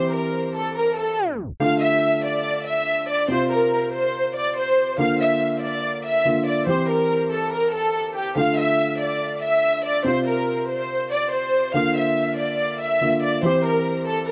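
A lush, bowed violin section carries the melody from the first second, its vibrato and portamento expressive yet distant, over a dark, mellow grand piano with deep bass, both parts softened by a low-pass filter. This menacing hip hop piece in D minor moves at 142 BPM with a half-time feel, and a tape stop at 1.2 seconds leads into the next section at 1.6 seconds, where the chords cycle through Dm, F5, Bb and C. Light reverb and a small room ambience frame this cut from a longer piece.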